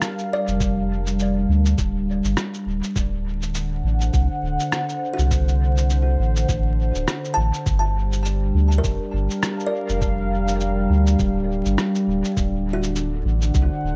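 A muffled, pitched-down electronic kick thumps in the background of a 102 BPM ambient dub groove in 4/4, swung at 58% on the sixteenths, while a compressed, tape-warm rim click and cabasa scatter dub echoes and a soft, round sub bass enters up front at 0.5 s. A warbling, detuned lo-fi pad with chorus and its own reverb holds dark, nostalgic Gm7 and D7 chords in G minor, and a woody, hollow-toned kalimba plucks short arpeggios that trail off into dub echo. Vinyl crackle, light reverb and a digital ambience give this spacious, hazy section, cut from a longer piece, its vintage haze.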